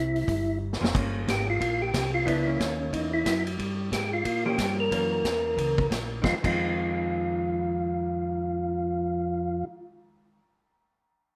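A large studio room with moderate reverb gives this bluesy, soulful soul jazz organ trio excerpt its space at a brisk 182 BPM in swung 4/4, cut from a longer piece and moving through chords like Gm7b5, Gb7 and Fm7. A mellow, round percussive tonewheel organ carries the melody, lightly overdriven with third harmonic percussion, chorus vibrato and a fast rotary speaker. Beneath it, a smooth, clean tonewheel organ bass with key click turns through a slow rotary, while a gritty, saturated vintage drum kit with dark cymbals plays a fill at 0.6 seconds and stops at 6.5 seconds, and a dark, picked, compressed hollow-body electric guitar comps from 0.8 seconds through to the end at 10.4 seconds.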